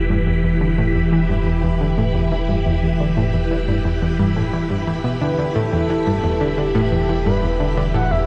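Drenched in a huge ambient reverb, this hypnotic, cosmic fragment of sequencer-driven space music in E minor drifts at 88 BPM over a single Em chord, with swirling, up-front phased string-machine chords, a round analog pluck riff through chorus and tape echo, a deep sine sub bass, a very quiet bubbling stepped-filter texture, and, from 5.2 s, a breathy flute-like synth lead with vibrato and shimmer reverb.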